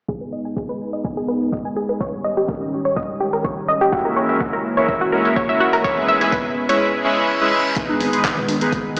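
A mellow, chorused analog pad and a bright, round analog pluck playing arpeggios open this dreamy, expansive progressive house excerpt in G# minor at 125 BPM. Both pump against a deep electronic kick and a tape-warm deep house kit of handclaps and hi-hat, while a filter sweep and dub echo color the pluck. A smooth, detuned supersaw adds up-front stabs from 3.9 s, and after a reverse cymbal the music returns to G#m at 7.8 s, where a rumbling, detuned saw bass and dry, overdriven electronic congas and toms sit in the background, all set in a lush hall reverb with a stony, AM-radio tone, as if played on a big sound system in a bare room.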